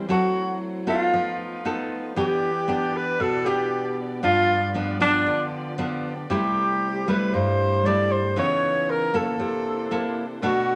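Bossa nova at 116 BPM in a straight 4/4, romantic and sophisticated, cut from a longer piece. Up front, a full-bodied, fingerpicked nylon-string guitar with audible finger squeaks carries the accompaniment, while a clear, subtoned alto saxophone with light vibrato sings the jazz melody, joined in the background by a soft-attack, straight-tone concert flute on a second line. Beneath them, a very quiet con sordino string section holds dark, veiled, lush bowed chords through changes such as F#m7b5, Em7, G7 and C6, all set in a wet studio reverb.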